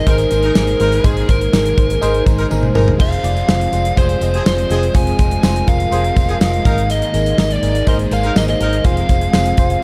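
A straight 4/4 groove at 123 BPM drives this nostalgic, urgent 1980s-style pop passage in F minor, with a punchy modern drum kit, bright cymbals and a drum fill at 2.5 seconds, a round foam-muted fingered bass, and a jingly tambourine tucked very quietly beneath. Up front, an overdriven lead guitar with digital delay carries the melody. It sits over a glassy, bell-like FM electric piano with chorus, a very quiet double-tracked overdriven rhythm guitar, sawtooth string-machine violas holding sustained chords, and a smooth-topped horn section adding delayed stabs in the background. The chords shift between Absus2 and Fm, and the production is dark and warm with light studio reverb.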